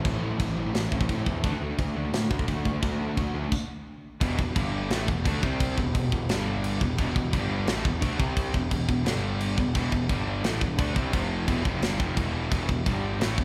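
Dark and epic, this heavy metal excerpt drives at 173 BPM in E minor, with three guitars, a distorted one, a heavy high-gain one and a lo-fi, double-tracked garage guitar, grinding out riffs in the background over a growly fuzz bass and an up-front, tight drum kit with bright china and crash cymbals. After a stop from 3.5 to 4.2 seconds, a very quiet, hollow pipe organ on stopped flute stops enters with sustained chords, adding chiff and tremulant as the harmony circles around E minor. The band sounds as if playing live in one room, bathed in a moderate church reverb.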